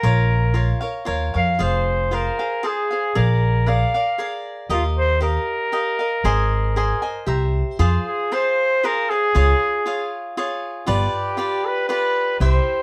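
In a straight 3/4 at 116 BPM, this festive, proud mariachi-style Mexican folk passage, cut from a longer piece, features a solo trumpet in classical style, warm yet distant and roomy, carrying the melody up front. A bright, crisp picked cavaquinho supplies the accompaniment while a woody pizzicato upright bass on steel strings holds the low end, all three placed up front in a moderate small room. The chords move through Bbm, Fm, Bb7, Ebadd9, Ab and C7 before settling into F harmonic minor at 7.8 s, where the harmony turns to Fm, Db and G7.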